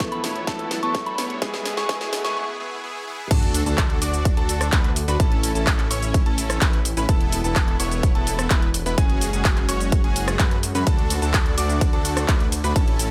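Festival progressive house at 127 BPM in straight 4/4, uplifting and anthemic, this passage opens on a build-up where a soft FM synth bell melody and an intimate grand piano with audible action noise sound only until 2.3 seconds, over a drum fill, a filtered supersaw, a very quiet riser and sub drop, and a brief break before the drop lands at 3.3 seconds with an impact. A punchy, up-front electronic kick and an overdriven house kit with a cracking snare, claps, hats, shaker, rim click, ride and crash drive a huge, compressed supersaw riff and a thick, saturated detuned saw bass, both pumping with sidechain, while a brilliant grand piano arpeggiates in the background and a lush unison pad holds very quiet sustained chords. The harmony moves through Esus4, F#sus2, D and A, and the mix sits in light digital reverb, with tape echo on the bell, both pianos and the supersaw.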